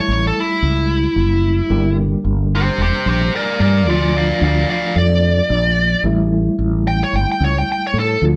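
Recorded live by a band in one room with moderate studio reverb and lossy-compression artefacts, this brief, soulful and brooding soul blues at 111 BPM in straight 4/4 features a smooth, overdriven picked lead guitar soloing up front, a reedy electric piano with fast tremolo heard through its built-in speakers, and a dark, round fretless bass, moving from A7 through Gm and Dm back to A7.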